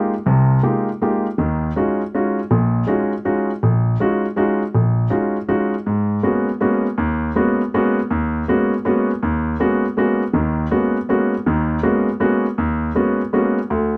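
Jazz waltz excerpt for solo grand piano, hypnotic and spiritual, with a lilting swung feel in three. The warm, up-front piano has a short sustain and sits in a moderate studio room, moving through minor eleventh chords from Fm11 to Ebm11 before settling on G#m11 at 5.9 seconds for the remainder of this fragment of a longer piece.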